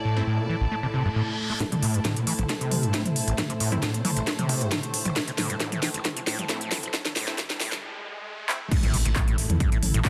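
Driving peak-time techno at 135 BPM in A minor, hypnotic and relentless, where a screaming, squelchy acid line riffs from the start over a background drone with moving overtones, bowed strings with vibrato and very quiet supersaw stabs, before overdriven kick and a cracking, up-front drum kit enter at 1.6 seconds for a filter-swept build-up with drum fills, a break at 7.8 seconds and a drop with an impact at 8.7 seconds, shortly after which, at 8.9 seconds, a deep, rumbling detuned saw bass joins under the sidechain pumping of this dense, heavily limited excerpt.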